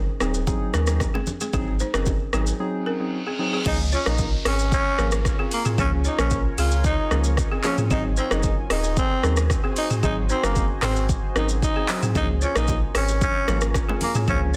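A growling tenor saxophone, breathy and raspy with vibrato and scooped notes, takes the up-front solo at 3.7 seconds, its tape echo trailing over a breezy, sunny afrobeats groove at 113 BPM in Db major, cut from a longer piece. Underneath, an overdriven electronic drum kit with a deep kick and metallic hats, a full sine-like sub bass, soft chorused electric-piano-like keys and a woody, buzzing balafon riff with tape echo drive things along, while ringing congas and bongos sit in the background at the opening and close, and a reverse cymbal and downlifter mark the turn into the sax section. From 5.2 seconds a moody, detuned ambient pad with chorus, built-in reverb and sidechain pumping hovers behind it all, in an otherwise dry, dense and heavily limited modern mix.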